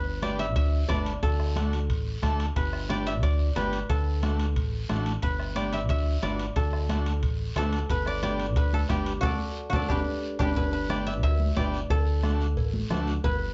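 A straight 4/4 cumbia groove at 180 BPM in G major drives this festive, danceable excerpt from a longer piece, with a mellow, woody koto played with fingerpicks carrying the melody through plate reverb over a warm, up-front fingered electric bass, a buzzy, lightly vibrato-tinged overdriven vintage combo organ, a soft-beaten bombo, bright high-tuned congas, a raspy guiro and very quiet ringing timbales and cowbell, all set in a small room heard from further back with a dulled top end as the chords alternate between G and D and a band accent at 9.2 seconds leads into a drum fill and organ fill from 9.6 seconds.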